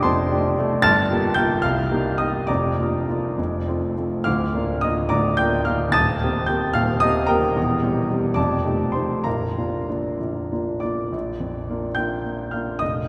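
A classical romantic character piece for solo piano, this short passage from a longer work unfolds in a lyrical, warm mood in Bb major. It moves in 6/8 at roughly 62-79 BPM counted in dotted quarters, with a free rubato feel that lets the phrases breathe. The grand piano sounds warm, natural and up front, covering a broad span from Bb0 up to A6, and it is tuned slightly low, with A4 at 437 Hz. The harmony drifts through rich chords such as F13, Gm7 and Cm7 before settling onto Bb at 9.3 seconds, and a new section begins at 11.1 seconds, carrying on until the passage breaks off at 13.1 seconds. A long cathedral reverb, typical of a church or concert hall, surrounds the instrument with a lingering, spacious halo.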